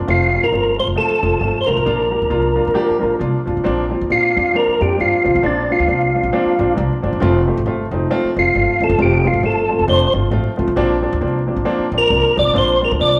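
Uptempo 1960s-style soul at 135 BPM in Bb major with a joyful swing, where a mellow, lightly overdriven tonewheel organ with chorus vibrato and a fast rotary speaker carries the melody and takes a solo from 3.7 seconds, over a woody, polished upright piano that adds a brief fill at 6.5 seconds and a growly, thumpy pizzicato upright bass, all heard as a band playing live in one large, wet-sounding studio room with vinyl crackle in this cut from a longer piece.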